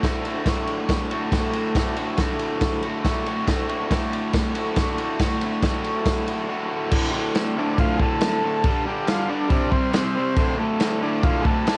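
Raw and rowdy, this short cut from a longer garage rock piece moves at 139 BPM in a straight 4/4, centred on D mixolydian. A bright, overdriven electric guitar, picked and double-tracked, drives the riff up front from the start, spanning D2 to F#4 with a cassette-tape grit. Beside it, a vintage acoustic drum kit in a small room sounds punchy in the kick and medium-tuned in the snare, with dark, rolled-off crash and ride cymbals sitting mid-forward. After a brief break at 6.5 seconds, the second section moves through D5, G5, C5 and back to D5. At 7.6 seconds a buzzy, overdriven combo organ with light vibrato joins with a melody between C4 and A4. The home cassette recording is dry and dull at the top end, giving the whole take a close, scrappy feel.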